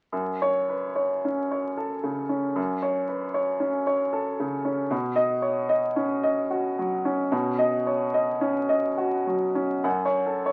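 A clear upright piano opens at 0.1 s, playing solo through a fine veil of vinyl crackle, as if from a very old 78 rpm record. This brief excerpt of neoclassical minimalist piano sits in F# dorian with a melancholic, wistful mood, moving in a rubato 3/4 at roughly 67-77 BPM. The piano sounds woody and smooth, placed up front, and spans from F#2 to F#5. The harmony rests on F#m, shifts to Badd9 at 4.9 s, and returns to F#m at 9.8 s. A moderate small-room reverb adds a short, intimate tail, and the tuning sits slightly high at A4 = 444 Hz, lending the whole recording a vintage, faded-photograph quality.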